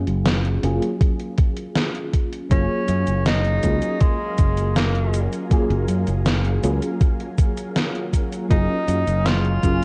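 A clear, distant tenor saxophone with light vibrato, scooped notes and tape echo carries the jazz-style melody from 2.5 s in this nostalgic, faded vaporwave fragment at 80 BPM in F# major, resting on an F#maj9 chord from a round, warbling FM electric piano with tremolo, chorus and delay, a growly, punchy fingered electric bass, a gated 80s drum machine playing cabasa, hi-hat and gated-reverb snare with gritty 12-bit crunch, a thumpy, overdriven electronic kick from 1.0 s, and a silky string machine drifting in behind from 3.2 s, the whole mix dressed in dark cassette-tape production.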